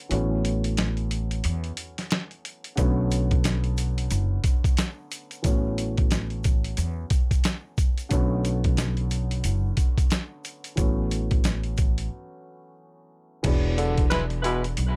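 Dark and gritty, this 90 BPM boom-bap hip-hop excerpt swings its 16ths over a thumpy, pitched-down sampler-style kit with crash, hi-hat, kick and snare, a growly pizzicato upright bass up front, and a dark, mellow, vintage-toned upright piano filtered through cassette tape, cycling between A6 and Bm7 with breaks from 0.0 to 2.8 s and 12.1 to 13.4 s. A grainy tube shaker sits in the background from 2.8 to 12.0 s. Near the close the harmony shifts to E7, and shortly after, a mellow, subtoned tenor saxophone with vibrato and scooped notes enters at 13.8 s, joined by tight, clear saxophone section stabs, both touched with tape echo in a dry, close-sounding room.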